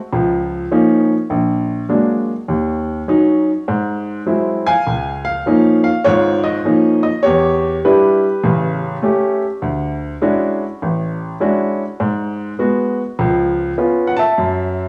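A home cassette recording with moderate spring reverb frames this sophisticated, warm solo jazz excerpt at 101 BPM in swung 4/4, where an intimate, up-front baby grand piano with a clear, natural tone and audible action noise ranges from Ab1 to A5 and moves through rich harmonies such as Db69, Bbaug7 and Dmaj9#11, with a new section beginning at 4.9 seconds.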